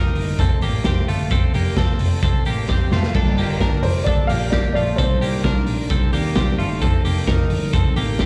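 Jangly indie pop at 131 BPM with a restless, wistful mood, heard as a short cut from a longer piece played live through a venue's PA into a recital-hall reverb. A bright, twangy twelve-string electric guitar picks arpeggios over a round, foam-muted vintage bass and a gritty, saturated garage drum kit that sits up front with a boomy kick, and after a drum fill at 2.7 seconds a dark, fingered electric guitar joins in the background. From 3.6 to 5.9 seconds a woody, slightly detuned upright piano carries the melody with slapback echo as the chords move from F7 through Fadd9, Gm7 and Cmadd9 back to F7.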